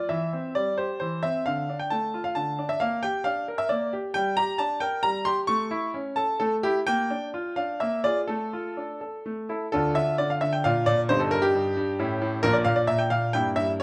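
A classical-period piano sonatina in 3/4 at 132 BPM, played with rubato on a bright, brilliant grand piano that sits up front and spans G1 to C#6, carrying an elegant, serious mood in D minor from 4.1 s. The smooth, vintage tone is captured by close, detailed microphones in a recital hall with moderate reverb, and harmonies such as Dm, Gm, A and Bb7 move toward a new section at 9.7 s. This passage, cut from a longer piece, ends at 13.8 s on an Edim/G chord.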